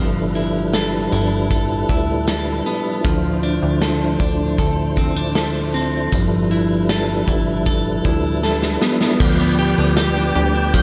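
A chorus-drenched clean electric guitar picks tape-echoed arpeggios up front in this haunting, melancholic dream pop excerpt. It rides over a mellow tonewheel organ's round chords through a fast rotary speaker and a plucky, ring-modulated analog bass, while a gritty, saturated garage drum kit with tambourine enters at 0.3 s and fills from 8.4 s, and a twinkling granular shimmer appears at 10.1 s, all set in a lush hall reverb.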